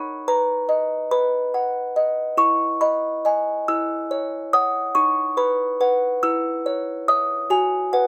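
A gently swaying 6/8 lilt, stretched and relaxed by rubato, gives this short classical lullaby its rocking, unhurried feel. A lone music box carries the whole piece, its delicate, tinkling plucked tones ranging from D#4 up to E6 with the intimate character of a small box. The sound is darker and smoother than one might expect from such a toy, and it sits up front in a moderate studio reverb that lends a soft halo. The harmony drifts from B/D# through Emaj7 and F#5/E, returns to B/D#, then moves through C#m/E to B5/F#, creating an innocent, dreamy atmosphere. Lasting about 8.1 seconds, this passage is a brief cut from a longer piece.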